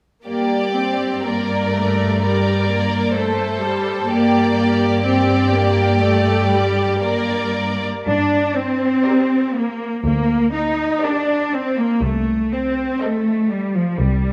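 Classical string-orchestra writing in a slow romantic vein, this excerpt from a longer movement sits in G minor at 61 BPM in 4/4, with a rubato feel that leaves it melancholic and yearning. A lush violin section carries the melody high above, its bowed vibrato focused and smooth-topped, while a second violin section traces a clear, even inner line beneath it. Violas fill out the accompaniment with rich, smooth tone, and the cellos anchor the bass, sitting up front in the blend. At 8.1 seconds the music moves into a new section as the double basses enter beneath the cellos, adding a clear, even foundation, and the harmony shifts from G minor to A diminished over C at 12.0 seconds. The upper strings stop at 13.8 seconds, leaving cellos and basses to close the passage at 14.3 seconds, all of it bathed in the wet reverb of a scoring stage.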